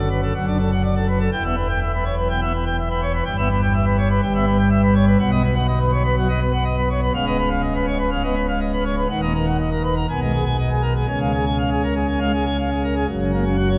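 A pipe organ on full plenum, mixtures drawn, dominates this jubilant, majestic classical toccata, playing solo from 0.0 to 13.8 s. Its romantic voicing sounds brilliant and up front, spanning from a deep C#1 to G#5 at the top. The harmony moves steadily through a chain of chords in straight 4/4 time before settling on F# at 13.1 s. A wet cathedral reverb with a 5.3 s decay surrounds the instrument, giving it a grand, resonant space. The organ is tuned to A4 = 444 Hz, and this short excerpt is cut from a longer piece.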